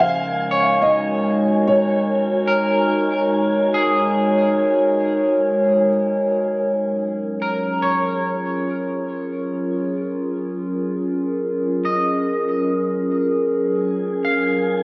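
Worn, warbling cassette tape and a wet concert hall reverb wrap this short ambient fragment, cut from a longer piece, in a warm, luminous mood. A felt-muted upright piano carries the melody at the start, soft, boxy and intimate under a diffuse ambient delay, until it stops at 5.9 s. Throughout, a detuned, slow-attack pad built from square and triangle tones sustains mellow chords up front, colored by chorus and its own reverb. Alongside it, a picked, twangy electric guitar at the edge of break-up plays arpeggios with subtle chorus and diffuse delay. An airy, breathy wind-like noise layer sits in the background, dropping out at 6.8 s, where the harmony moves from Ab9sus4 to Gbmaj9, and returning at 13.8 s.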